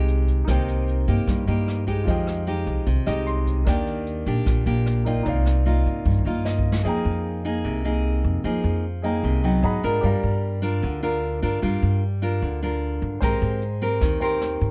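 Bossa nova with a melancholic, wistful mood, cut from a longer piece and set in a straight 4/4 feel. A fingerpicked nylon-string guitar with fresh strings carries the classical-style accompaniment up front, beside a woody, pizzicato upright bass on steel strings that sits just as close and holds the low end. A jazz kit played with brushes adds hi-hat, rim click, a medium-tuned snare and a boomy kick in a small, natural room; it drops out after 6.8 seconds, following its own fill, and returns at 13.2 seconds. A clear, smooth grand piano with a vintage character sits lower in the mix, accompanying in its upper range and adding short fills. The dry, close, detailed sound lets each instrument come through plainly as the harmony moves from Cm7 and Fm9 through Abm7 and Gm7 to a final Abmaj9.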